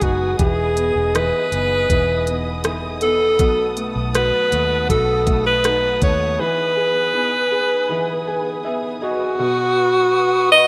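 A rough home-demo mix, bathed in a lush hall reverb, gives this tender, heartfelt pop ballad a roomy, intimate sound; it is cut from a longer piece. At 80 BPM in 4/4 and B major, a breathy alto saxophone sits up front with the melody, close-miked and whispered, its subtone notes scooped and shaded with vibrato in a jazz style. Beneath it a felt-muted upright piano plays soft, mellow accompaniment, while a dark studio string section holds woody, sul tasto chords and a clean, direct-recorded electric guitar picks very quiet arpeggios. A round, foam-muted fingered bass and a smooth R&B kit of knocking kick, smooth hats and rim click carry the groove over Emaj7 and B7, with the drums dropping out just before the bass stops at 6.4 seconds. In the break that follows, the piano adds a fill at 7.9 seconds, and the guitar falls away as the music settles onto Badd9 at 9.4 seconds.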